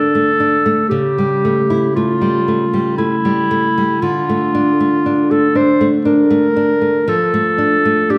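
A clear, punchy clarinet sings a solemn melody over bright, fingerpicked nylon-string guitar from the very start of this brief, melancholic passage from a longer romantic duo in D minor, moving at a rubato 58 BPM in 3/4 through D5, A7/C#, Dm and Dm/F, with both instruments up front in a resonant recital-hall reverb.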